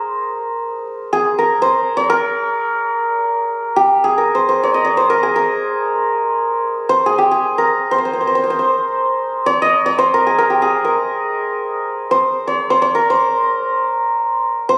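Persian modal ensemble music in free time, this longing, hypnotic piece features a solo acoustic santur, bright and shimmering, ringing up front in light reverb across its 14.8 seconds, captured on a phone in a club-like room.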